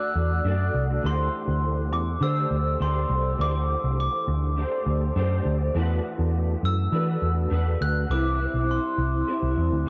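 Indie pop with a bedroom-pop haze, this nostalgic, laid-back excerpt moves at an easy, straight 4/4 pulse, cut from a longer piece and captured as a home recording on cassette in a small room with light reverb. A glockenspiel played with soft plastic mallets carries the melody high in its register, its bell-like, ringing tone colored by analog chorus, analog delay and cassette tape, placed in a boxy small-room space. An electric guitar through a small old amp supplies the accompaniment, sounding slightly broken-up, picked and compressed, with ensemble chorus, a vibrato effect and the lo-fi grain of tape. From 0.2 seconds a vintage muted picked electric bass joins underneath, dark, round and punchy with a foam-muted thud, sitting up front as the loudest part. The harmony drifts between suspended ninth chords, resting on E9sus4 and D9sus4 before settling on Cmaj7 at 8.1 seconds, giving the whole passage a dreamy, unresolved glow.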